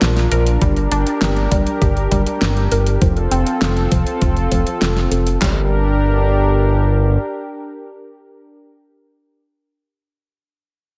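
A smooth, detuned analog pad with chorus and sidechain pumping opens this cinematic, nostalgic synthwave excerpt, joined at once by a fat, nasal sawtooth bass with tube saturation and a filter sweep, and a pop drum kit of fat snare and metallic hi-hat touched by slapback echo. A bright, round analog pluck soon adds filter-swept arpeggios with chorus and digital delay in the background, and from 0.6 s a gated 80s digital drum machine brings a thumpy, overdriven kick, handclaps and a gated reverb snare over chords of Bb, Gm and F. The drums and pluck drop out by 5.7 s as a new section settles on Gm, leaving the pad and bass in a lush hall that gives a big arena sound.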